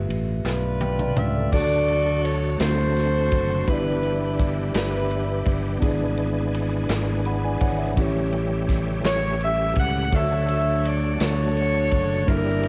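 Uplifting and hopeful, this slow gospel excerpt sways in 6/8 at 56 BPM in D major, with a mellow tine electric piano carrying a cassette-tape grain and a round, up-front fingered electric bass underpinning chords that move from G13 through D7 and E7/G# to a closing Dmaj7. A swinging big-band drum kit with a punchy kick and airy cymbals plays a fill from 0.5 to 1.5 seconds, while crisp group handclaps sit in the background and a full, shouting tonewheel organ enters at 1.5 seconds with slow rotary speaker and chorus vibrato. Out front, an edgy, tight saxophone section with light vibrato and a vintage character states the melody, pausing at 5.8 seconds before returning at 9.1 seconds, all set in a small-room home recording with light reverb.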